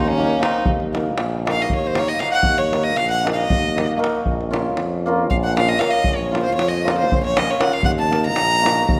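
A rich, focused violin with vibrato opens this bittersweet, fiery Balkan wedding-band excerpt in Eb minor, joined briefly by a reedy, mellow accordion in the background that stops at 0.7 seconds, while a clear, distant tuba holds the bass with light vibrato. A deep davul and a shimmering, ringing hammered dulcimer fill in the 7/8 groove at 234 BPM, counted in eighths, with the harmony moving from Eb minor to Bb minor at 4.2 seconds and back. The up-front bowed violin carries a solo from 0.6 seconds to the end, set in a moderate concert hall reverb.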